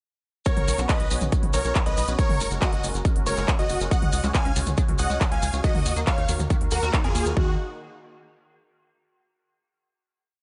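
A huge, detuned supersaw lead carries a bright, phased riff melody in thirds and sixths, with a vintage baby grand piano in the background doubling it in unison through dub echo, in this bittersweet, euphoric uplifting trance piece in Eb minor at 139 BPM. Beneath them, a punchy, overdriven four-on-the-floor kick sits up front alongside crisp programmed hats, claps and toms, grainy hand-played maracas in sixteenths, a tight rolling sixteenth-note sequencer bass, and an evolving filtered supersaw pad, the bass and pad pumping with the sidechain through a drop over Bsus2, Gbadd9, Dbsus4 and Ebm. A squelchy, resonant acid arpeggio enters at 3.9 seconds, a band accent lands at 6.9 seconds, and the piece closes on a final chord at 7.4 seconds in a digital ambience.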